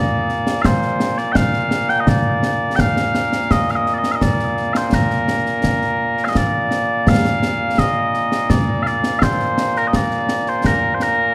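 A light reverb gives this short passage of Scottish pipe music a gentle sense of space, with both parts placed up front. Mellow small bagpipes carry the melody from the very start, their sweet, continuous tone ranging from Bb2 up to G5 in a stately triple metre with a straight feel. A concert snare drum and concert bass drum join at 0.3 seconds, sitting a little below the pipes and adding bright cymbals and an acoustic small-room character. The mood is proud and ceremonial. The same section is heard twice, the repeat beginning at 7.1 seconds, before the piece is cut off at 11.3 seconds as part of a longer performance.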